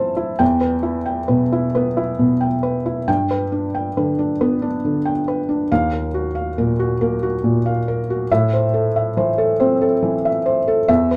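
Reflective and wistful, this short passage cut from a longer neoclassical minimalist piano piece moves at a slow 46 BPM in a rubato 6/8, its dotted-quarter pulse breathing freely. A felt-muted upright piano plays alone throughout the 11.2 seconds, its mellow, intimate tone sitting up front with a short sustain that keeps each note soft and close. The part ranges from D#2 up to A5, so deep bass notes sit beneath the higher lines. The harmony passes from Em to G, then to D#madd9 around 5.7 seconds before settling on Am. A short, wet studio reverb gives the sound a natural sense of room, and the instrument is tuned slightly high at A4 = 442 Hz.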